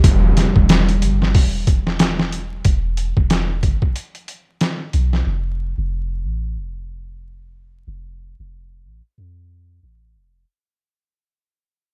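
Vinyl crackle and a digital ambience frame this brooding, cinematic trip hop fragment, which fades out from the start and moves at 92 BPM in 4/4 with a 16th-note swing. An electronic impact opens it alongside a gritty, pitched-down sampler-style drum kit with a thumpy kick, medium-tuned snare and hi-hat; the kit sits up front with a compressed, tape-warm sound and drops out at 5.3 seconds. Also up front, a deep, round 808-style sine bass with a fast attack and dark decay carries on under a filter sweep until 10.4 seconds.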